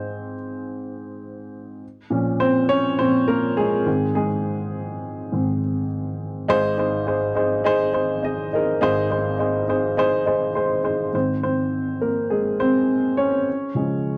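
Pop with an anthemic, hopeful mood, cut from a longer piece and played by a lone upright piano at a lightly swung, moderate pace. The piano sits up front with a dark, woody, slightly detuned tone, spanning from deep bass to bright upper notes, and adds a short fill at 10.0 seconds before a closing passage from 11.1 seconds where the harmony opens onto an added-ninth chord. The sound is dry and close, in the manner of a 1970s studio, with a small room reverb.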